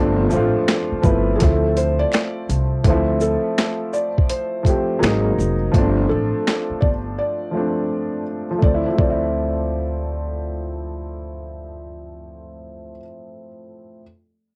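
Lo-fi hip hop at 83 BPM in D minor with a swung sixteenth feel, nostalgic and melancholic. A warm, woody upright piano carries the chords under cassette-tape coloring, beside a dark, thumpy pizzicato upright bass on gut strings. A compressed, pitched-down, gritty boom bap sampler-style kit with a high-tuned snare sits up front from 0.3 to 9.2 seconds, and a short break arrives at 7.2 seconds. Very quiet, band-limited finger snaps flicker near the start, and a soft, felt-muted second piano sings a mellow, intimate melody from 1.0 seconds in this dry home-cassette excerpt.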